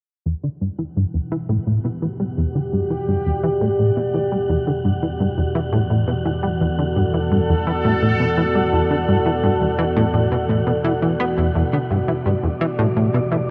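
A punchy, funky analog bass riff leads this cosmic, mysterious stretch of sequencer-driven space music at 85 BPM in E minor, its ring-modulated sawtooth and pulse tones plucked with a fast attack, touched with tape grit and delay, and shaped by a filter sweep until 11.6 seconds. Alongside it, a resonant, detuned pad holds an Em7 chord with airy, evolving filter swells, while a dark, nasal drone on E2 sitting in the background and a breathy, wind-like tuned noise texture fade in shortly after the start. The whole mix sits in a huge, wet reverb with a cassette-tape haze, in a section cut from a longer piece.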